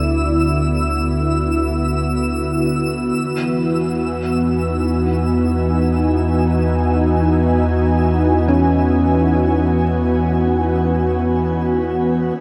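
A smooth, detuned sawtooth analog pad sits up front in this peaceful, luminous ambient passage in free time, its chorused chords moving from D6 to Emaj7 at 3.2 seconds over a deep, round sine sub bass. High above, a sparkling granular texture with an octave-up shimmer and its own reverb fades out across the passage, and at 8.5 seconds a felt-muted upright piano enters in the background, playing soft, dark arpeggios with audible action noise through a diffuse delay. A moderate shimmer reverb with a long 9.0-second tail bathes the sound of this fragment cut from a longer piece.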